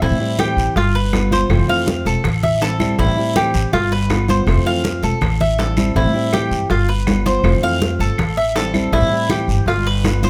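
Metallic, double-strung Cuban tres arpeggios sit up front over a dark, thumpy gut-string upright bass and a warm fingerpicked nylon-string guitar in this danceable A minor Cuban son and guajira cut at 162 BPM, cycling through Am7, G7 and Fmaj7, while thick-skinned congas, a raspy guiro, tight high-tuned bongos in the background and distant woody claves entering at 0.4 s drive the straight 4/4 groove under light reverb.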